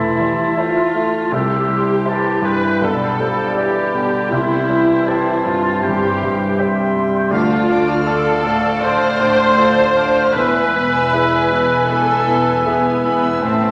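Brooding and passionate, this short orchestral passage moves at 80 BPM in 4/4 with a rubato feel, drifting through A minor, C, G over B, D minor and finally E. A clear, intimate grand piano carries the melody across a broad range, its polished tone and long sustain sitting present in the mix, with faint action noise audible. Up front, a rich, close viola section supplies smooth, even accompaniment, while a very quiet cello section and a background double bass section anchor the bass with lush, bowed vibrato. Woodwinds weave second lines around the piano: a clear oboe with light vibrato, a bright close-miked clarinet, and an airy, hollow flute section set distant in the background, while a mellow, roomy bassoon adds very quiet accompaniment. A tight French horn section holds soft sustained chords, and from 0.6 seconds two violin sections join, one lush and barely audible on the melody, the other focused and rich on a second line reaching high into the upper register. 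The whole ensemble sits in the wet reverb of a scoring stage, giving the fragment, cut from a longer piece, a spacious, cinematic glow.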